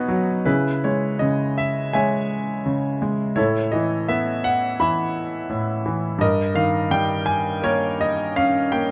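A bright grand piano, up front and intimate with its action noise audible, plays alone throughout this short excerpt of lyrical classical solo piano, moving with a rubato feel and reaching from G2 to B5. The mood is cool and bittersweet as the harmony passes from C#m to Asus2 and then D#7/G at 6.2 seconds. Close, detailed microphones and light reverb give the instrument a brilliant, present sound.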